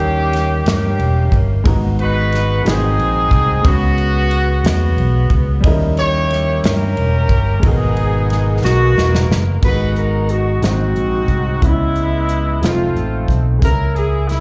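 A slow, straight 6/8 gospel pulse at 60 BPM, counted in dotted quarters, carries this soulful, fervent G# minor passage cut from a longer piece, with a tight-kicked, airy country drum kit and a round, amped fingered electric bass sitting up front beneath an intimate, boxy grand piano whose action noise is audible. A distant, roomy horn section in pop style leads the melody with light vibrato and slapback and tape echo. At 8.6 seconds a drum fill arrives as a breathy, subtoned alto saxophone joins in jazz style with scooped notes and slapback echo, all heard as a live club gig through the venue's PA.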